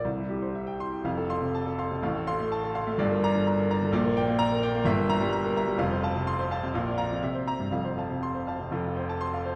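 Heard from further back in a reverberant recital hall, this short cut from a longer classical virtuoso piano study in F major sparkles with heroic energy at 118-131 BPM in a rubato 2/4, its solo baby grand sounding clear, open and up front with long sustain as it ranges from F1 to C6 over harmony that settles from C through Gm and Bb to a C7 before resolving home to F at 7.7 seconds.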